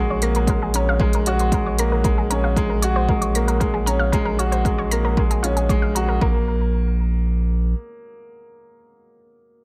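Melancholic and moving, this short excerpt of piano and strings electronica at 115 BPM sets a bright baby grand piano riff up front with tape echo against a round, deep analog bass pumping on a sustained Bb1 under a Gbadd9/Bb chord, while a nasal, wave-folded analog pluck plays chorused, echoing arpeggios and a punchy electronic kick and smooth hi-hats drive the groove until the beat drops out at about 6.3 seconds, leaving the bass to hold on until about 7.7 seconds and the piano to carry on until 9.6 seconds in a light reverb.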